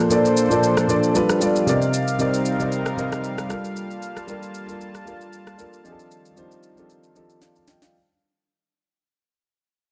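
Amapiano with a warm, soulful mood, in a short clip that fades out across its whole length as it moves through rich chords like Bbmaj9, Cm9 and F13. An up-front, worn-sounding grand piano carries the accompaniment with audible action noise, while a detuned sawtooth analog pad with chorus sustains slow-attack chords alongside it. Electronic shaker, rim click and a sharp snare keep the swung groove and close with a drum fill at 7.4 seconds, all in a dry, gritty hardware sound touched by light digital ambience.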